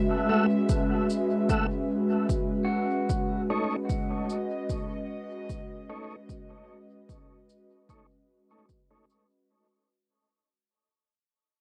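Spacious and hazy, this ambient dub fragment moves at 75 BPM in 4/4 with a light sixteenth-note swing, cut from a longer piece and fading out across its whole length. An airy, breathy pad holds sustained chords up front, its detuned, full-bodied tone softened by chorus, slow attack and long release, moving from F#m7 to B9 at 3.1 seconds. A smooth tonewheel organ with audible key click adds chorus-vibrato stabs that pass through a low-pass filter and dub echo, with a filter sweep running throughout. A punchy, layered electronic kick sits up front and is touched by cassette tape, while a tape-tinged shaker sits far back in the mix with dub echo. A clean pedal steel guitar appears only briefly, from 2.6 to 3.4 seconds, picking arpeggios on F#4 through analog delay. The home cassette recording carries a moderate booth ambience.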